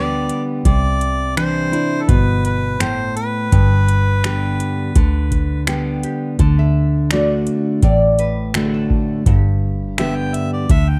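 Close, detailed and nearly dry, this easygoing, heartfelt honky-tonk and classic country excerpt in G major moves at 84 BPM, with a full-bodied jumbo steel-string acoustic guitar picked up front, a dark, round, foam-muted electric bass, and an analog drum machine of deep kick, metallic hats and finger snaps re-recorded in a large room, while a mellow harmonica opens with a solo of scooped notes and a nasal lap resonator guitar played with slide and fingerpicks carries the melody from 6.0 seconds.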